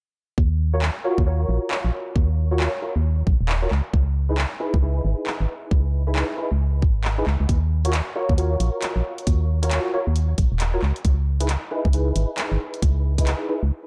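Moody and soulful, this two-step UK garage excerpt swings over a dark, dry production as a hollow, organ-like FM bass and a tight, layered electronic kick sit up front from 0.4 seconds, while the harmony moves between Ebm9 and Dbm9. Nasal, percussive organ stabs enter at 0.7 seconds, their sound thickened by ensemble chorus, gritty 12-bit sampler texture and digital delay. Further back, a punchy analog drum machine adds handclaps and hi-hat with the spacious character of a large room, before everything breaks at 13.7 seconds.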